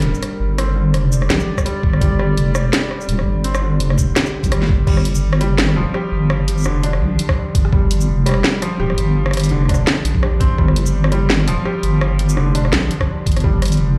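A deep, wobbling bass sits up front in this tense, spacious half-time drum and bass excerpt, its sine-and-triangle tone soft and warm with a fast attack and a touch of chorus. A felt-muted upright piano plays mellow, intimate arpeggios throughout, coloured by vintage 12-bit sampler grit and a digital delay. A dark analog pad of detuned square and sawtooth waves with a sub octave holds sustained chords in the background, treated with chorus, phaser and sidechain pumping, until it drops out at 4.9 seconds, where the harmony moves from a G minor add9 chord to a bare G power chord. The electronic kit brings a cracking snare, bright hats, rim clicks, shaker and crash with a lightly swung, layered feel, joined from 1.6 seconds by a pitched-down, tape-warm, thumpy sampler-style kick in recurring bursts. The whole mix sounds as if it were played through a big sound system in a bare room, with a large studio reverb adding space.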